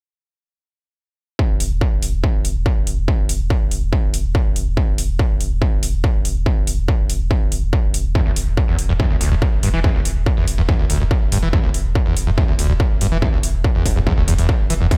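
Driving peak-time techno at 142 BPM with a dark, industrial mood, cut from a longer piece: a distorted, up-front electronic kick with studio reverb enters at 1.4 s, joined moments later by a deep, thick overdriven sub bass, low-pass filtered and pumping with sidechain, and a layered metallic hi-hat, before a screaming, squelchy sawtooth acid line, resonant and filter-swept with distortion and a subtle chorus, enters at 8.2 s, set in a dry, bright 1980s-style digital production.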